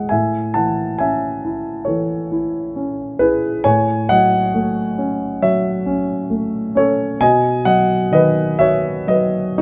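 Classical solo piano in a melancholic, wistful mood, this brief lyrical excerpt moves at a rubato 67 BPM in 4/4, its dark, mellow concert grand sitting up front with deep bass and short sustain, captured by close, detailed microphones in light reverb as the harmony passes from Amaj7 through F#m/A to B.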